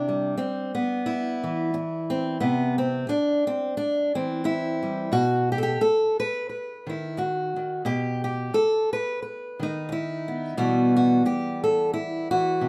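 Folk piece for solo fingerpicked steel-string acoustic guitar at 88 BPM in 4/4 with a light swing, reflective and melancholic, its fresh-stringed, up-front tone catching the odd finger squeak under light reverb as it moves from Cadd9 to B at 5.1 seconds and settles on Em/B at 10.6 seconds in this short cut from a longer piece.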